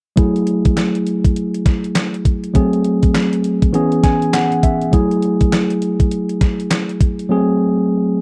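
An overdriven gated 80s digital drum machine with a thumpy kick, gated-reverb snare, handclaps and hi-hat punches up front through this bouncy, swung new jack swing R&B fragment, while a clean tine electric piano played through a combo amp carries the chords in F# minor, adds a fill from 3.7 to 4.9 seconds, and rings on alone after the drums stop at 7.3 seconds, all in a dry, close 1970s-style studio sound.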